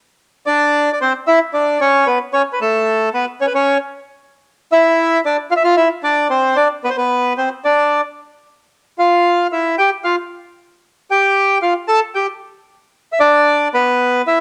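In a rubato 4/4 around 113 BPM, this elegant, nostalgic tango fragment, cut from a longer piece, features a solo bandoneon that enters at 0.5 seconds and sits up front with a reedy, bright tone colored by cassette tape, moving through chords from C and A to Dm, Bm, Em and Fadd9 before a brief chordless moment and a closing Bmadd11, all bathed in a wet spring reverb on a home cassette recording tuned to A4 = 441 Hz.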